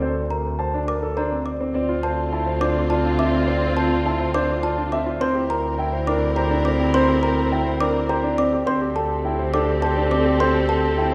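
Meditative yet urgent, this excerpt of minimalist classical pattern music moves at 104 BPM in 3/4 in D minor, where a warm, boxy concert grand carries the melody over a clear grand piano's arpeggios with audible action noise, a bowed double bass holding D2 with smooth vibrato, and a woody, mellow trough xylophone with soft rubber mallets adding close-miked arpeggios from 0.3 seconds, until at 1.7 seconds a distant clarinet second line and a lush, focused symphonic string section join with sustained chords as the harmony moves from Dm7 through C7/D to Am7/D, all set in a wet scoring stage reverb.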